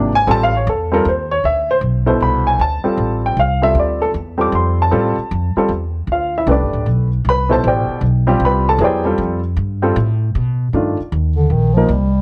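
A baby grand piano carries this searching, intense jazz waltz, its intimate, natural tone touched with plate reverb, a short sustain and the audible clatter of its action as it accompanies in swung 3/4 at 155 BPM. An upright bass plays pizzicato beneath it throughout, woody and up front on steel strings. The harmony in D dorian moves from Am7 to Dm9, settles on Gsus4/D at 6.1 seconds, and shifts to Cm9 near the close. At 11.4 seconds, shortly before the piano drops out at 11.9 seconds, a mellow bass clarinet steps forward for a brief solo, close-miked with a light vibrato. The whole fragment, cut from a longer piece, is wrapped in light reverb and the worn, warbling pitch drift of old cassette tape.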